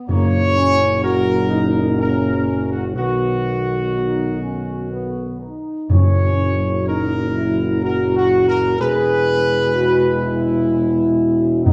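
A mellow, smooth-topped trumpet section carries the melody up front in this regal, triumphant classical fanfare in three, over soft-attacked French horn chords, a dark trombone section with vibrato sitting in the background, and a mellow tuba bass with light vibrato, heard from further back in a reverberant stone room, while close, dry hard-mallet timpani strike articulate notes at 0.1, 5.9 and 11.7 seconds.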